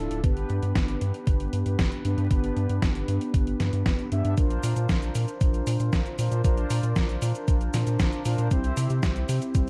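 Mellow, detuned synth-brass stabs with chorus and digital delay open this bittersweet, nostalgic italo disco excerpt at 116 BPM, sitting over a round, deep analog bass. A detuned 8-bit drum machine enters at 0.1 seconds supplying cabasa, hi-hat and a medium-tuned snare, and a thumpy electronic kick follows at 0.2 seconds, both drum parts carrying small-room ambience and a tape-warm character. The chords move from G to Bbadd9 at 4.4 seconds and C at 8.5 seconds, all wrapped in a dark production with light reverb and vinyl crackle.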